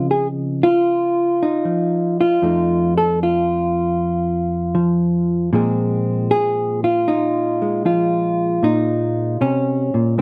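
Solo jazz at 77 BPM in Bb minor with a swinging, cool feel, this short excerpt features a lone hollow-body electric jazz guitar, dark, clean, fingered and compressed, sitting up front in a moderate studio reverb with a rough home-demo mix as it moves through Dbmaj9, F7 and Bbm9 in swung 4/4, tuned to A4 = 436 Hz.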